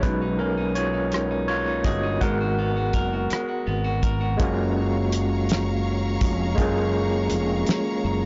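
Slow, intimate and sensual six-eight R&B at 55 BPM in F# major, cut from a longer piece, where a barky, gritty overdriven tine electric piano with fast tremolo takes the lead for the first 4.4 seconds over a growly, chorused fretless bass, a dry, dark, cloth-damped drum kit with a fat snare and tight kick, and a clean, picked electric guitar line that stops at 5.0 seconds, before a lush, bowed studio string section enters with sustained chords at 4.4 seconds, all in a blown-out, overdriven recording with light small-room reverb and a dulled top end.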